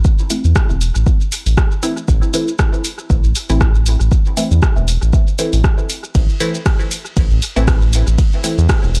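A swung 4/4 dub techno groove opens on an up-front, tape-warm electronic kick and a round, dark analog bass that pumps against it, while a softer house kit of hi-hat, ride cymbal, rim click and shaker trails dub echo, and from 0.3 s muted, mellow filtered chord stabs pluck through phaser, pumping and echo, all on a single minor chord in a cavernous, gritty hardware-recorded passage lifted from a longer piece.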